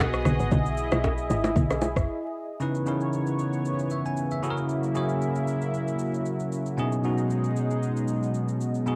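This hypnotic, late-night amapiano excerpt at 115 BPM opens on a lush, detuned pad with chorus and a cassette-tape tint. It is joined at once by a woody, punchy log drum bass and acoustic bongos and congas, while a produced drum kit with a knocking kick, rim click and shaker carries a light 16th-note swing. The hand percussion stops at 2.0 s and the log drum at 2.1 s, opening a short break before a bell-like, clean tine electric piano comes up front at 2.6 s over chords moving from C#m7 through F#9/C# back to B6, all set in light reverb with a homemade haze of vinyl crackle.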